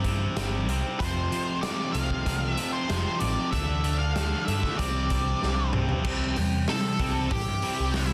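Cathartic and angsty, this quiet-loud alternative rock excerpt at 95 BPM pairs an up-front overdriven guitar riff, a growly, punchy picked bass and a gritty, saturated garage drum kit with a dark, rolled-off top in a stone room, while a very quiet, clean twelve-string electric guitar plays bright arpeggios underneath; a fuzzy octave lead guitar carries the melody with slapback echo from 1.0 s, a drum fill at 5.4 s leads into the next section, and a very quiet, sludgy distorted guitar riff joins at 6.0 s, all within a dense, heavily limited modern master.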